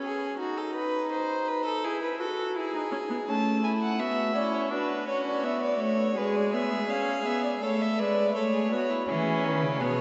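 In a straight 4/4 pulse, this joyful, stately baroque-style fugue for string quartet opens with a reedy, gut-string viola and a second violin with light vibrato, is joined at 3.3 s by a close, nasal, airy-bowed period-style violin melody, and gains a rich cello bass at 9.1 s, each part bowed by a single player up front within a wet cathedral reverb and a dark top end.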